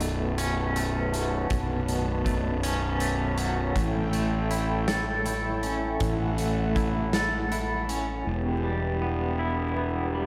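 A brooding, melancholic post-rock passage, cut from a longer piece, opens with everything sounding at once: a twangy, clean electric guitar playing fingered arpeggios, up front and compressed, colored by tremolo and tape echo. Beneath it, a fuzz-soaked fingered electric bass sits dark, round and punchy, while a brassy, detuned sawtooth analog pad holds bright, evolving sustained chords with a soft attack, chorus and vibrato. A big acoustic rock kit of punchy kick, medium-tuned snare and hi-hat carries the slow 53 BPM 6/8 pulse with a straight feel, then stops at 8.1 seconds. The harmony moves from Bsus2 to A7 at 3.8 seconds and settles on E minor as a new section begins at 8.3 seconds, with guitar, bass and pad ringing on to the end. A lush hall reverb gives the whole an arena-sized spaciousness, flecked with vinyl crackle.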